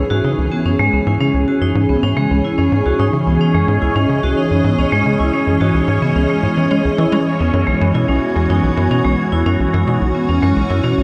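From 0.0 s, an evolving, detuned wavetable pad with phaser and a punchy sawtooth sequencer bass riff with analog delay drive this mysterious, cosmic ambient space music at 109 BPM in C# minor, alongside a bubbling, resonant stepped-filter texture and, from 0.1 s, metallic, ringing hard-mallet vibraphone arpeggios, the harmony shifting from C#m to Bsus4 at 7.3 s inside a huge, wet reverb in this excerpt from a longer piece.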